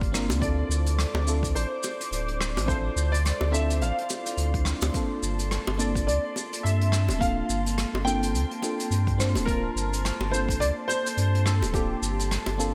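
Relaxed and wistful, this sunset chillout excerpt drifts along at 106 BPM in 4/4 with a gentle sixteenth-note swing, set in G dorian and tuned slightly low to A4 = 438 Hz. A dark, intimate concert grand carries the melody from 0.4 seconds, its audible action noise and vintage character softened by ensemble chorus and delay, while a mellow FM electric piano, round and decaying with a noisy edge, supplies the accompaniment through chorus, phaser, cassette tape coloring and delay. Beneath them an airy, breathy pad holds sustained chords with a slow attack and long release, and a deep sine sub bass sits up front, round and sustained. The rhythm comes from a layered, tape-warm electronic kick that stops at 11.9 seconds, a distant brush kit with hi-hat, rim click and shaker, and low-tuned bongos struck with hard hands. Over the harmony moving from Dm9 to Gm11, a lush hall reverb and bright 1980s-style digital production give the whole passage a spacious, glowing finish.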